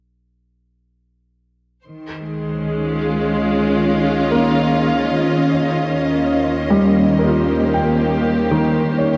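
Ambient cut from a longer piece at a slow 50 BPM in 3/4, warm and luminous in Db lydian, where a lush, up-front bowed string section sustains vibrato chords from 1.9 seconds, a round sine sub bass fades in beneath it, a floating, very quiet sul tasto violin section hovers high above, and from 4.3 seconds a felt-muted upright piano adds intimate arpeggios with audible action noise and diffuse ambient delay, all bathed in a dark cathedral reverb as the harmony moves from Dbadd9 to Eb7.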